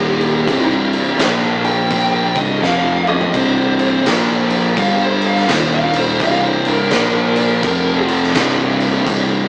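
A rough rehearsal-room recording with tube saturation, a small-speaker sound and light reverb frames this sludgy, heavy stoner and doom metal excerpt in a swung 4/4. A compressed, fuzz-laden lead guitar carries the solo melody until 8.1 seconds over two thick, dark fuzz guitars playing the riff, one up front and one in the background, while a growling, overdriven picked bass sits low behind them. An oversized, low-tuned drum kit up front brings a punchy kick, fat snare, toms and dark crash cymbals in a bright, pumping stone room, with a drum fill from 2.6 to 3.3 seconds.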